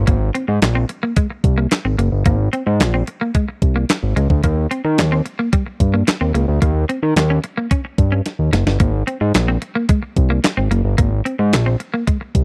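A straight 4/4 groove at 110 BPM drives this smooth, danceable stretch of early-eighties boogie funk in Ab major, cut from a longer piece. A clean 12-bit drum machine sets the pulse with a thumpy kick, snare, hi-hat and handclaps, its sampler-style electronic sound tape-warm and up front, and it breaks into a short fill at 8.3 seconds. The fat analog bass sits slightly above the drums in level, a thick, nasal, detuned blend of sawtooth and square wave with a saturated edge, a fast attack and a sustained, evolving tone, ranging from Gb1 to Eb3. A bright, twangy clean electric guitar plays a compressed, picked riff between G3 and Db4, bathed in lush chorus. The harmony moves from Abadd9 to Eb7 at 4.4 seconds and back again, while the dry, close 1970s-style studio sound keeps the parts near the listener with little reverb.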